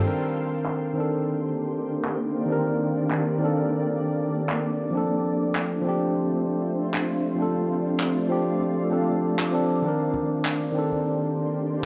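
A clean, up-front tine electric piano carries this smooth, relaxed sunset chillout excerpt, its chords passing from Cm9 to Dm7 and back to Cm9 in C dorian at 98 BPM with a gentle sixteenth-note swing, an analog delay trailing its notes. Beneath it, a shimmering, ethereal ambient pad holds sustained chords with slow attacks and long releases, its granular, octave-up glow thickened by chorus and its own reverb while a filter sweep moves across it. Layered electronic handclaps enter at 0.7 seconds and carry on until 10.6 seconds, tape-warmed and muffled by low-pass filtering, with a filter sweep running through the drums as well. Soft-handed congas slip in at 10.1 seconds, bright and close yet sitting well in the background. The whole track sits in a lush hall reverb while keeping a dry, gritty cassette-tape character.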